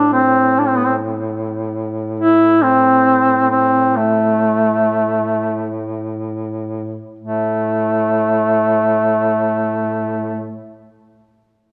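This Caucasian folk lament, cut from a longer piece, carries a solemn, longing mood in a dark, warm production. A duduk sings the melody up front, its tone roomy yet distant, shaped by vibrato and scooped notes in a folk style. Beneath it, a second duduk holds a low drone with a vintage colour, also touched by vibrato and scooped notes. The line slows from 1.4 s, and a new section opens at 7.2 s. A moderate concert hall reverb gives both reeds a spacious, mournful sheen.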